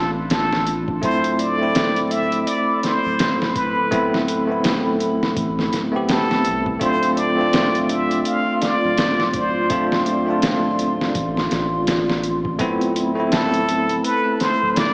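Melancholic and brooding, this trip hop excerpt moves at 83 BPM with a swung 16th feel in D dorian, as a plunger-muted trumpet with tape echo sings a jazz-style solo line full of wah-wah inflections, vibrato and scooped notes over a bell-like tine electric piano with tremolo and tape echo, all drifting between Dm7 and Amadd9/D. A warbling, nostalgic tape-like pad with chorus sits mellow in the background, while a deep, round dub sub bass anchors the low end and a compressed, pitched-down sampler-style drum kit with a thumpy kick and muffled snare joins at 0.3 seconds. The whole mix is soaked in lush hall reverb and vinyl crackle, with a small-speaker sound that heightens its dreamy, faded character.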